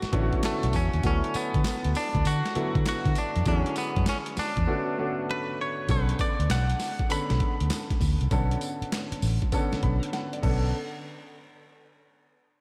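Swung sixteenths at 99 BPM in 4/4 drive this bouncy, punchy new jack swing R&B piece in B dorian, where a gritty, overdriven boom bap sampler-style kit with thumpy kick, snare, hi-hat, handclaps, tambourine and crash sits up front beside a dark, round, foam-muted fingered electric bass, a polished baby grand piano accompanies over Bm9, D69 and E13 before a fill at 9.5 seconds, and a bright, twangy clean electric guitar carries the melody through spring reverb and diffuse delay, with the mix soaked in dreamy hall reverb until a drum fill at 10.1 seconds gives way to a chordless close at 10.7 seconds.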